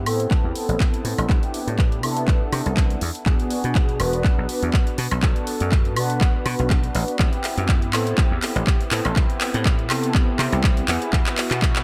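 A mellow synth brass part and a dry, thumbed slap bass open this sensual, groovy piece of filtered disco house together. Played at 122 BPM in 4/4 with a light swing on the sixteenths, it sits in A dorian. The brass is round, brassy and detuned, with a sawtooth edge, ring modulation and a dark, chorused sheen. It sustains chords that move from Amadd9 through Cmaj7, E7, Bm7 and Am9, treated with phaser, analog delay, a low-pass filter and sidechain pumping. The bright, foam-muted bass is punchy and direct, also filtered and pumping. A layered, tape-warm house kit of handclaps, hi-hats and woodblock arrives at 0.1 s, with warm hats that are high-passed and pumping, while a punchy, analog electronic kick sits up front from 0.3 s. The whole 11.8-second excerpt from a longer piece is one build-up, with a running drum fill and a filter sweep. It is set in an echo-heavy mix with a moderate spring reverb.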